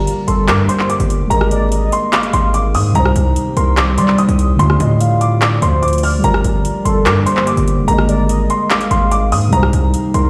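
A distorted 808-style bass sits up front in this menacing, melancholic trap passage cut from a longer piece, its saturated, heavy tone carrying a noise layer and a fast, decaying attack. Above it, a dark baby grand piano plays the high melody with a worn, boxy character and audible action noise, low-pass filtered and treated with tape echo. Muted felt-like synth keys fill in the accompaniment with a soft, intimate sound thickened by chorus, while a glassy FM pad holds sustained chords in the background, its ethereal, warbling vintage tone washed in ensemble chorus and reverb. A trap drum kit enters at 0.1 seconds in a half-time feel, with metallic hi-hats, handclaps and rim clicks, all overdriven and re-recorded in a small room. From 0.3 seconds a warm, velvety synth lead adds a smooth second line with tremolo, vibrato and tape echo, over a brooding Gm, Absus2, Cm, Dm progression, the whole mix sounding as if played through a big sound system in a bare room, with large studio reverb and vinyl crackle.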